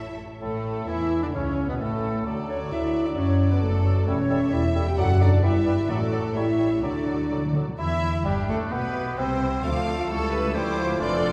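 A chamber-sized string body opens this graceful, cheerful classical-period movement at a quick 131 BPM in 2/4. One violin section carries the melody in the background, while a second, closer violin section plays an expressive second line over very quiet, distant violas, smooth cellos and a close double bass section. From 0.4 s a clear oboe, airy flutes, a vintage-toned clarinet and a soft-attacked bassoon join mellow French horns holding sustained chords. Round, soft-mallet timpani sound briefly at 1.3 s and return with a fill before the key moves from D major to C major at 7.8 s, all heard from further back in a wet concert hall.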